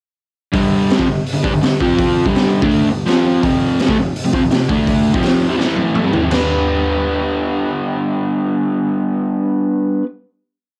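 A gritty cassette home recording with light reverb captures a rowdy, raw garage rock piece at 166 BPM in G mixolydian, where a double-tracked, overdriven electric guitar plays a picked power-chord riff over G5, F5, D5 and A5 while a saturated, boomy-kicked drum kit with a high-tuned snare drives a stomping groove, plays a fill from 5.6 seconds and stops at 6.4 seconds, leaving the guitar to ring out a final G chord until 10.1 seconds.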